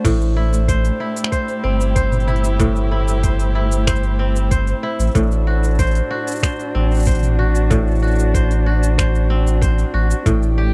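Delicate and intimate, this short folktronica passage sits in a steady, straight four, moving from Am7 to D7/A. A bright, ringing kora plays fingerpicked arpeggios throughout, its crisp tone roughened by vintage 12-bit sampler grit and trailed by tape echo. Alongside it, a dark string quartet holds sustained chords with woody, bowed vibrato, one player per line, while a round sine sub bass, mellow and up front, adds tube saturation to the low end. A soft, tape-toned electronic kick anchors the groove alongside a quieter organic electronic kit of crisp hats, shaker, finger snaps, toms and crash cymbal, both re-recorded in a small room. At 10.4 seconds a very quiet reversed, granular texture swells in, detuned and dreamy, carrying its own built-in reverb. The overall sound is dry and close, like a 1970s studio session, with little room ambience.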